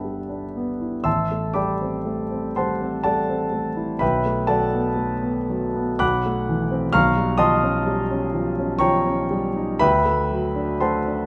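The rhythm moves in a loose triple metre, with uneven beats and a rubato flow that lets each bar breathe. This is a classical solo piano fragment in an impressionist style, hazy and luminous in mood, cut from a longer piece and lasting 11.3 seconds. A concert grand carries everything alone, ranging from a deep bass to a high, glinting treble, with a long, natural sustain and audible action noise that makes it feel intimate and up front. Seventh and ninth chords drift past, colouring the harmony with shimmering extensions, including an Eb9 over a B bass at 7.0 seconds before settling on D9. Close, detailed microphones capture the instrument within a moderate recital-hall reverb, and its tuning sits slightly below standard pitch.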